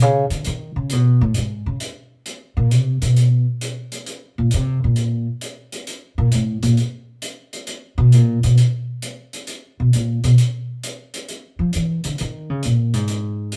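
An up-front, woody upright bass takes a pizzicato solo on steel strings in this sophisticated small-group swing and bop fragment, moving at 133 BPM in 4/4 with a 68% swing on the eighths. A dark, smooth hi-hat sits well back beneath it from 0.3 seconds, and the pair play live together in one room with a moderate studio reverb that lends the whole a warm air.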